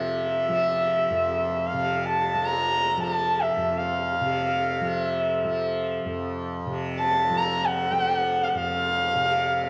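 A dark, intimate sarangi carries the melody up front, its soft-attack bowing airy and gliding with light vibrato, portamento and the ring of sympathetic strings, moving between E5 and Bb5. Beneath it a softly plucked tanpura holds a buzzing, shimmering drone from F2 to F3 throughout the 9.7-second excerpt, setting a meditative yet radiant Hindustani mood in free time and F major, tuned to A4 = 443 Hz. Both parts carry the character of a home cassette recording, with moderate spring reverb and a small room's ambience.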